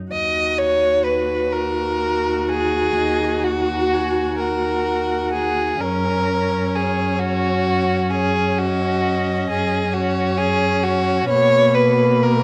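A classical slow romantic movement for string quartet in a rubato 12/8, elegiac and yearning, cut from a longer piece. Muted violin, viola and cello, each a single bowed player con sordino, open together with a dark, veiled sound: the violin's second line sits in the background, the viola's soft-attacked accompaniment is close with vibrato, and the cello's bass is up front with light vibrato. At 3.0 s another muted violin takes the melody up front with vibrato and portamento, while a moderate concert hall reverb surrounds the ensemble.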